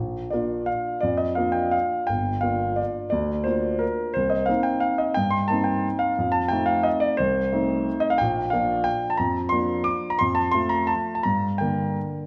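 In 3/4 waltz time with free rubato, moving at 161-191 BPM, this sparkling, playful classical excerpt in Bb major features a solo grand piano, polished and up front, spanning G1 to D6 through a progression from Bb to Gm7, Cm7 and F7, all bathed in the 1.6-second glow of a recital hall.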